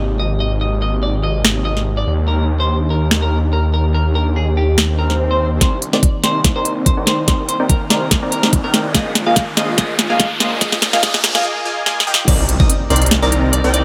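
Future bass in C minor at 144 BPM with a half-time, lightly swung feel, this emotional, bittersweet excerpt opens on a clean, hollow-body electric guitar melody carrying a dub echo over an airy, breathy pad that sits softly in the background. Beneath them, a thick, detuned sawtooth bass with chorus stays up front, and the guitar, pad and bass all pump against the sidechain as the harmony moves from Abmaj9 to Ebmaj7. A trap kit with a sharp snare, crisp hats, finger snaps and crash enters at 1.4 seconds, its overdriven sound re-recorded in a small room. At 5.6 seconds a punchy supersaw stab riff and an overdriven, knocking electronic kick join as the build-up begins, with the stab's low-pass filter sweeping, a riser climbing and drum fills over Cm9 and Bb7sus4. After a short break, the drop lands at 12.3 seconds on Cm9 with an impact, the swell, riser and impact effects staying in the background from their arrival at 5.0 seconds.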